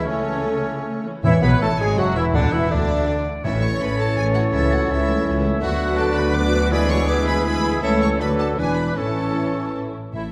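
A full classical-period orchestra opens together in A major, lively and cheerful in a quick 3/4 at 151-169 BPM with a touch of rubato: a rich, vibrato-laden violin section carries the melody, while a very soft second violin line, a clear oboe, a vintage-toned clarinet and an airy flute section with rolled-off highs weave second lines around it. A mellow bassoon and a smooth-topped viola section fill in the accompaniment, distant French horns hold sustained chords, a tight trumpet section adds stabs, and double basses join a lush cello section on the bass. Faint timpani on medium mallets sound from 1.2 to 3.9 seconds and again briefly at the very end, and the whole orchestra sits in a moderate concert hall reverb in this brief cut from a longer piece.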